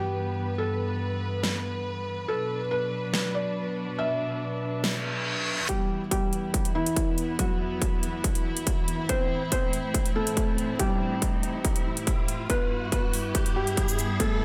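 Aggressive and heavy, this half-time wobble dubstep fragment opens with a soft, felt-muted upright piano carrying the melody through tape echo, its action noise audible, over a dark chamber string section holding bowed sul tasto chords that pump with sidechain. The dubstep drum kit arrives at 1.4 s with a huge snare and metallic hats. After a reverse cymbal at 5.0 s, a distorted electronic kick drum lands up front at 5.7 s to drive a build-up beneath an electronic riser, and the passage ends on a drum fill.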